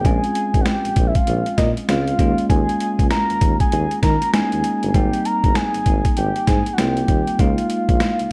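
This punchy, confident new jack swing cut opens with four parts at once, anchored by a gritty, compressed sampler-style boom bap kit sitting up front, its thumpy kick, high-tuned snare and hi-hat wrapped in gated reverb over a swung sixteenth-note feel. Beneath it, a warm tuba plays a jazz-style bass line with vibrato, while a bell-like tine electric piano moves cleanly through Bbm7, Eb7sus4, Abmaj7 and Db6. On top, a round, dark octave-layered synth lead carries the melody with chorus, tremolo and vibrato, all set in a digital ambience.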